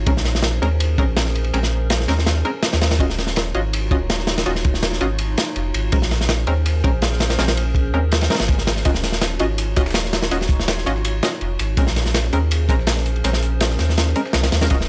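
A dry, gritty hardware sound with transformer saturation frames this raw, dark fragment of drum and bass and jungle, cut from a longer piece and moving at 164 BPM in a straight 4/4. Up front, a crunchy acoustic breakbeat kit of kick, snare and ride cymbal sounds saturated and mid-forward, with a tight kick, a medium-tuned snare, dark cymbals and a rolled-off top. Beneath it, a soft, round dub sub bass with tube saturation holds the low end, while a muted, mellow sawtooth chord stab plucks through an analog chorus and dub echo. In the background, a warbling, nostalgic tape-like pad sustains detuned chords with a slow attack, chorus, built-in reverb and vintage 12-bit sampler grit. The harmony alternates between Bbm9 and Ebm9, and at 8.9 seconds a very quiet, compressed, dusty soul sampler-style kit adds hi-hat and snare.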